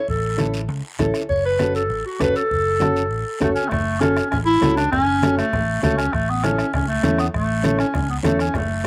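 This fragment has an open-air sound with little reverb, as though played outdoors. It is a danceable, festive cumbia in 4/4 at 199 BPM with a straight feel, moving from A to F#m and back to A at 6.1 s. A warm, classical-style clarinet carries the solo melody up front, though its tone sounds distant and roomy. A woody, full-bodied nylon-string guitar, thumb-plucked in a deep classical manner and touched with slapback echo, accompanies from 0.4 s. A round, amped, fingered electric bass sits low beneath it. In the background a soft-beater bombo and low-tuned, ringing congas played with soft hands keep the pulse, while a raspy guiro sounds close and dry, and the second section begins at 3.7 s.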